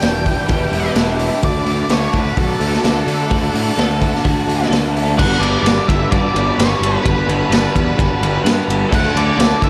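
Dreamy and wistful, this shoegaze and dream pop cut from a longer piece rides a gritty, boomy raw garage drum kit and a growly, punchy fuzz bass up front, with an octave-fuzz lead guitar carrying the melody through distortion and delay. Behind them, a bright, twangy twelve-string electric guitar spins chorused arpeggios, a raw garage guitar and a lo-fi, slightly broken-up guitar through a small old amp play riffs, the latter tinged with reverse reverb. A thick, detuned unison pad sustains mellow chords as the harmony moves from Em7 and D into Gmaj7 at 5.2 seconds, all soaked in a lush hall reverb.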